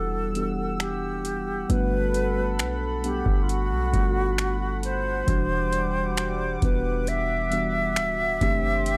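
Contemporary R&B in E minor at a slow 67 BPM in straight 4/4, this short excerpt carries a longing, sensual mood over chords moving from Em9 to Gmaj9, back to Em9 and closing on D7sus4. A bright, airy alto flute sings the melody up front with vibrato and tongued notes, its lifted highs trailed by an analog delay. Beneath it, muted felt-like synth keys give an intimate, dark accompaniment with a chorus effect, while a chorused pulse-width pad holds shimmering, retro sustained chords with a slow attack. A deep, boomy 808-style bass with a sine tone and fast, decaying notes sits up front, and a booming analog drum machine enters at 0.4 seconds with finger snaps, metallic hi-hat and a deep, tape-warm kick. The whole is set in a digital ambience and has a dry, gritty hardware character.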